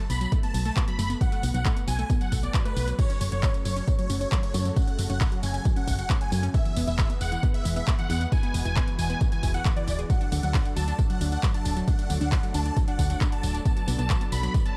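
Driving straight 4/4 at 135 BPM in F# minor, this emotional, euphoric uplifting trance excerpt sets an up-front, punchy electronic kick and an overdriven, layered drum kit of crash, handclaps, hi-hat and tambourine under a round, dark FM bass, a detuned sawtooth pluck playing arpeggios with digital delay, huge bright supersaw chords carrying the melody through phaser and delay, and, from 3.2 seconds, an airy, chorused pad in the background, all the synths pumping with sidechain across a dry, dark production as the chords move through F#m, E, D and Bm7.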